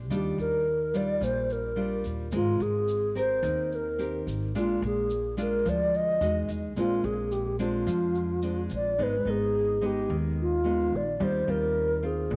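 Sophisticated and romantic, this bossa nova passage moves at 108 BPM in a straight 4/4 and is cut from a longer piece. A mellow wooden-headed alto flute carries the expressive melody up front with a pure tone, vibrato, a crisp attack and rolled-off highs. Beneath it sit a fingerpicked classical nylon-string guitar with old strings and a woody sound, a warm pizzicato upright bass on steel strings, and a grainy, bright egg shaker that drops out at 9.0 s as the harmony moves from Ebmaj9 and Bb9 toward Abm and Eb69, all in a moderate echo chamber reverb with small room ambience.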